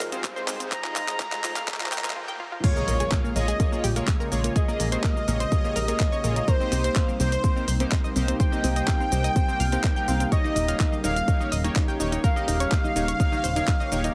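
The recording has a heavily compressed, radio-style sound with light reverb and a high-pass filter, and it is cut from a longer progressive house track at 125 BPM in a straight 4/4, set in Bb dorian with a bittersweet, driving mood. It opens on a build-up, with a drum fill and a riser from the background riser-and-impact effects, a brief break at 2.2 seconds, and a drop at 2.6 seconds marked by an impact. A punchy, layered electronic kick drum sits up front, joined by a produced pop kit of cabasa, crash cymbal, handclaps and hi-hat. A plucky analog bass enters at 2.9 seconds: funky and dark, with a fast attack, a moving notch and sidechain pumping. Above it, a round, detuned analog pluck plays arpeggios through chorus and tape echo. A glossy, retro polysynth adds mellow stabs with a filter sweep, and a smooth, slow-attack pad holds sustained chords in the background. An expressive synth lead carries the melody with vibrato, analog chorus and tape echo, joined by a soft, evolving supersaw second line, while the harmony moves from Fm7 through Bbm7 and Cm7 to Eb7.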